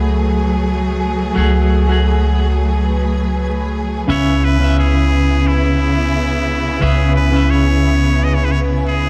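Hypnotic and dark, this trip hop excerpt at 88 BPM in C# minor sets a swung groove on a thumpy, woody pizzicato upright bass up front, with a picked clean electric guitar colored by tremolo, tape echo and 12-bit sampler grit, lush bowed strings sustaining F#madd9/C# into C#m7, and a reversed, granular swelling texture drifting in the background, until a nasal, raspy straight-muted trumpet enters at 4.1 seconds with tape echo, all under light studio reverb and vinyl crackle.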